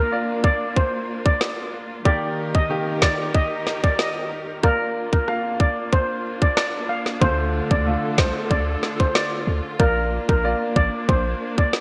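A shimmering, metallic steel pan carries the melody up front, its vintage, band-limited tone trailed by a digital delay, in this bouncy, sultry dancehall cut from a longer piece, moving at 93 BPM in a straight 4/4. An electronic island pop drum kit enters at 0.4 seconds with a tight kick, woody snare and rim click, roughened by vintage 12-bit sampler grit and a gated reverb. Underneath, a polished baby grand piano with subtle chorus and a focused studio string section holding bowed, vibrato-tinged chords both pump against the sidechain. The harmony moves from Bb through Eb and back to Bb, then turns to D minor at 7.2 seconds, where a deep, boomy 808-style bass with a fast attack and decaying sine tone joins in before returning to Bb. A lush hall reverb and bright 1980s-style digital production give the whole piece a glossy sheen.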